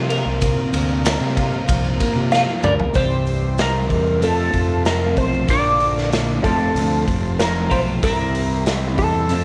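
Hypnotic and hazy, this psychedelic rock excerpt moves at 95 BPM in C mixolydian, built on a twangy, phased twelve-string electric guitar riff, a growly fuzz bass and a gritty, saturated garage drum kit with a punchy kick and pumping room sound, while a reedy combo organ with heavy vibrato holds very quiet sustained chords and grainy maracas stay very quiet. Together with a drum fill at 2.3 seconds, a slightly broken-up lead guitar enters up front with wah and slapback echo, carrying the melody as the harmony moves from C through F and Bb starting at 3.0 seconds. The whole track sits in a small room with light reverb.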